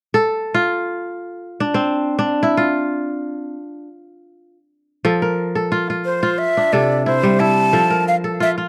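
West African traditional music in free time and F major, joyful and flowing, this short excerpt from a longer piece opens with a bright, ringing kora playing arpeggios alone, crisp and up front in a dry, close 1970s-style studio sound with light reverb. At 6.0 seconds a breathy jazz flute enters with a soft-attack, straight-tone melody carrying tape echo, as the harmony moves from F to C and back to F, and the flute stops at 8.5 seconds while the kora rings on to the end.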